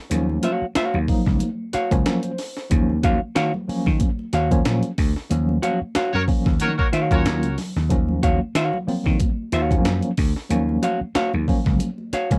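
A lightly swung sixteenth-note funk groove in 4/4 rides on a gritty, pitched-up breakbeat kit with a thumpy kick and high-tuned snare, while a growly, punchy slap bass and distant, very quiet high-tuned congas fill out the bottom and edges, setting a sly, cool mood over a single minor-ninth chord. A dark, clean hollow-body jazz guitar plays accompaniment, and a worn, slightly out-of-tune tine electric piano, overdriven and pulsing with tremolo through a combo amp, punches out stabs and a short fill at 1.7 seconds. The band hits an accent from 5.3 seconds, and within it, at 6.1 seconds, a tight, clear horn section briefly adds a second line with light vibrato, all captured in a dry, close 1970s-style studio sound cut from a longer piece.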